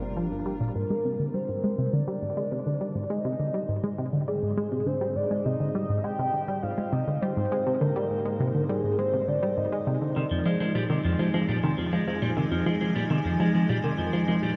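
Ambient, sequencer-driven space music at 102 BPM in 4/4, expansive and hypnotic, cut from a longer piece and set in a vast, echoing space with a huge reverb tail. A tight, driving sequenced synth riff with a detuned sawtooth edge, chorus, phaser and tape echo runs throughout, while a morphing wavetable pad fades in from 0.8 s under chords moving from Gm7 to Ab to Fm7, and a brief round sub bass note sounds at the very start. Up front, a dark, full-bodied octave-layered synth lead with vibrato carries the melody until 10.0 s, after which a clean, picked semi-hollow electric guitar enters with tape-echoed arpeggios from 10.2 s.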